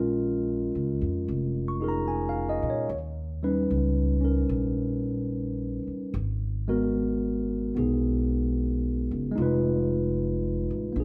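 Wistful and intimate, this short jazz ballad excerpt moves at an unhurried pace in a swung 4/4 feel. A barky tine electric piano carries the accompaniment throughout, its bright, lightly overdriven tone sounding direct and up front as it spans a fairly broad register. Beneath it, a plucked upright bass with steel strings supplies the low end from 0.0 to 11.0 seconds, its woody, growly voice sitting close to the listener. The harmony drifts through minor-seventh and altered dominant colors, passing from Bbm7 through Eb7b13 and Abm9 to a closing Fm7b5. A moderate large-studio reverb places the pair a little further back in the room, lending the spare duo a gentle sense of space.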